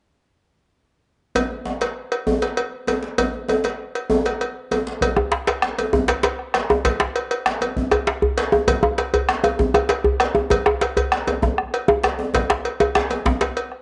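In a straight 12/8 at 131 beats per minute, counted in dotted quarters, this powerful, driving West African drum ensemble piece is cut from a longer performance. From 1.4 seconds, a metallic cowbell, set up front in a small room, sounds alongside a djembe struck with hard hands, its tone warm and deep with metal rattles and a sense of a large, distant space. At 5.0 seconds the second section begins and a dark, deep bombo enters, close and dry. A second djembe joins at 5.2 seconds with a tight, cracking voice that sits close and up front, the most prominent part in the mix. A moderate spring reverb gives the acoustic drums a studio sheen, while the top end stays soft and rolled off.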